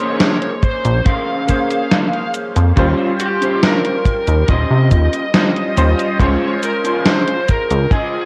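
In this woozy, melancholic vaporwave fragment at 70 BPM, a distorted high-gain lead guitar with tape echo carries the melody over a clear electric grand piano with a clangy low end and a slightly broken-up, fingered electric guitar riff, both touched with ensemble chorus and analog delay. A tape-warm gated 80s drum machine of cabasa, hi-hat and gated-reverb snare enters at 0.2 seconds, followed at 0.6 seconds by a dry, tight kick drum and at 0.8 seconds by a glossy, nasal chorused synth bass that sits up front, as Bbm9, Eb13 and Dbmaj7 drift by under light reverb and a cassette-tape haze.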